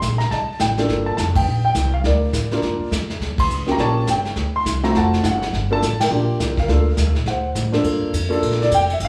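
A moody, swinging jazz piano trio starts at once, with a warm, up-front baby grand carrying the melody over a woody, growly pizzicato upright bass and a vintage brush kit with dark cymbals, a punchy kick and a rolled-off top. The band hits shared accents at 1.3 and 3.4 seconds as the harmony moves through dusky seventh chords, and the piano breaks into a brief solo at 7.8 seconds. The fragment, cut from a longer piece, captures the trio playing live in one room, with a natural piano tone and moderate studio reverb.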